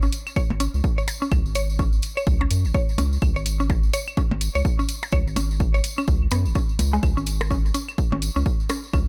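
A swung 4/4 groove of punchy, up-front electronic kick, tape-warm hi-hat, jingly tambourine and overdriven claves, percussion blips and rim click trailing dub echo drives this hypnotic, cool minimal techno cut from a longer piece, as a deep, round analog bass pumps against the kick beneath a woody, mallet-like FM pluck riff dressed in chorus, sidechain pumping and dub echo, all in a dry space.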